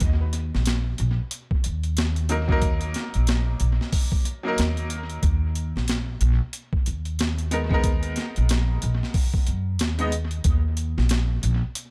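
Trip hop in Eb minor at 92 BPM with a swung sixteenth-note feel, this smoky, brooding fragment of a longer piece moves from Ebm to Abmadd9 before settling on Eb5. An up-front upright bass, plucked pizzicato with a woody, thumpy tone, anchors the low end beside a gritty, compressed, pitched-down sampler-style drum kit whose overdriven hi-hat, kick and high-tuned snare carry analog delay and the sound of a large room. From 2.3 s to 10.1 s a bright, brilliant upright piano with short sustain adds accompaniment through tremolo, 12-bit sampler grit and tape echo, all set in a small, echo-heavy room.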